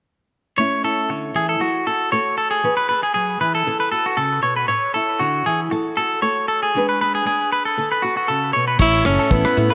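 Set in a moderate plate reverb over a small room's ambience, this joyful, carefree highlife guitar band clip at 117 BPM in A major opens at 0.6 seconds with a bright, fingerpicked nylon-string guitar under a twangy, compressed clean electric guitar playing up-front arpeggios through tape echo, cycling through A, F#m7, E and D. At 8.8 seconds the full band arrives: an edgy, forceful tenor saxophone takes the melody with scooped notes and tape echo, a clear trumpet with smooth top carries a second line in the background, a round, punchy fingered bass anchors the low end, and a damped 70s drum kit with dark cymbals, tight kick and rim clicks adds a lightly swung groove before the cut.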